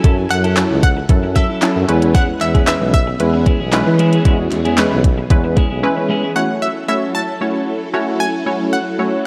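Carefree and upbeat, this short dance-pop excerpt moves at 114 BPM in a straight 4/4, with a punchy, detuned polysynth comp and a round analog pluck melody carrying chorus and dub echo over sidechain-pumped string-machine violas with phaser sitting in the background, moving between F#m7 and E6. An up-front warm tuba with light vibrato plays the bass line and a slightly broken-up, twangy electric guitar riff adds lush chorus, while a smooth R&B drum kit with a soft kick, sharp snare and handclaps is soon joined by a very quiet, crisp group handclap. The drums drop out at 5.7 seconds and the tuba at 5.8 seconds. The guitar follows at 6.4 seconds, and the synths and strings carry on in a dark, moderately reverberant hall sound.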